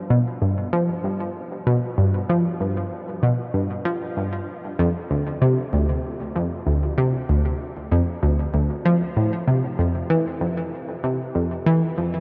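A dark, cavernous sound with a huge ambient reverb that rings on for seconds frames this cosmic, expansive ambient fragment in F lydian, moving at 96 BPM in a straight 4/4 and tuned to A4 = 437 Hz. A lone analog pluck plays up front throughout, from D2 to F3, its round, detuned sawtooth and square-wave tone laced with a noise layer and a filter sweep. Each note has a fast attack and short decay, its bright tone carrying chorus and trailed by delay.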